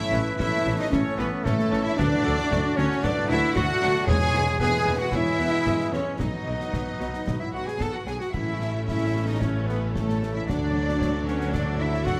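A moderate scoring-stage reverb gives this heroic adventure film cue a roomy, cinematic sheen, and the passage is cut from a longer piece in a soaring, adventurous mood. A symphonic violin section carries the melody with light vibrato and a smooth top. A silver concert flute, a second lush violin section and a soft-attacked clarinet shape supporting second lines, while a clear viola section adds very quiet accompaniment and a concert harp rings out fingerpicked arpeggios. Bright trombones and distant, warm French horns hold sustained chords beneath mellow trumpet stabs, and the low end rests on a close, rich cello section, a studio double bass section and a mellow, roomy tuba. Concert snare, bass drum and dark clash cymbals drive the rhythm, and the timpani sounds on E2 from 4.1 to 4.8 seconds.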